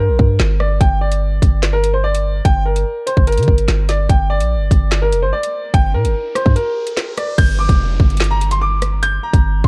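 A dark, digitally ambient drill excerpt in G minor at 146 BPM with a half-time feel sets an ominous, tense mood: a clear, open concert grand piano carries the melody over a punchy, heavy sine 808 bass with a noise layer, while an up-front electronic drum kit with a hard-clipped kick, woody snare, metallic hi-hats, handclaps, rim clicks and crash enters at 0.2 s, and a background riser and downlifter arrive at 5.4 s to build toward a break at 6.6 s before the next section.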